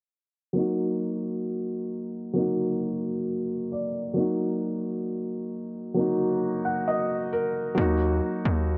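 A soft, mellow felt-muted upright piano carries this eerie, hard-hitting half-time hip hop excerpt from 0.5 seconds, adding fills within a filter sweep under a lush hall reverb, before a heavy, saturated 808-style bass with a noise layer arrives at 7.8 seconds.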